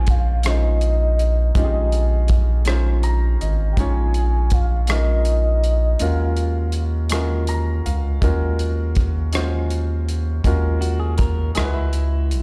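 A soft, octave-layered synth lead with chorus, tremolo and tape echo sings a yearning melody over clear, intimate grand piano and a round, deep analog bass from the very start of this late-night, slow six-eight R&B excerpt in Bb minor at 54 BPM, with a cloth-damped, thuddy drum kit of kick, hi-hat and rim click entering at 0.1 s, the piano adding fills during a break from 6.0 s as the harmony moves from Bbm11 to Ebm11, the lead falling away at 6.8 s, and a clean, compressed electric guitar joining for the closing moments, the mix sitting in a large studio reverb.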